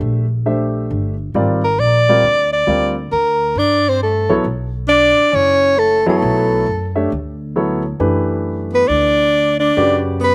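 Searching and hypnotic, this modal jazz excerpt swings at 135 BPM in 4/4 as a polished, present baby grand piano and a woody, growly pizzicato upright bass move from Gm11 to Bm11, while a smooth-topped soprano saxophone carries the melody with vibrato and a soft attack from 1.6 seconds and a breathy, close-miked tenor saxophone adds a second line of scooped notes from 3.6 seconds, in a dry outdoor sound with little reverb.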